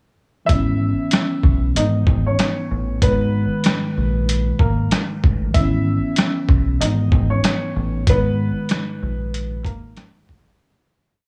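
A sparse, swung boom-bap beat at 95 BPM in G# minor, played on an overdriven, pitched-down sampler-style kit with a thumpy kick, a snare layered with rim and quarter-note hats, drives this reflective, moody hip hop piece, while a deep, round fingered electric bass loops a line with slides and chromatic approach notes, a mellow tine electric piano with cassette-tape colouring holds spread chords, and a woody, slightly detuned upright piano repeats a short melody doubled in octaves through analog delay, in a dry sound that fades out from 8.1 s to 10.6 s.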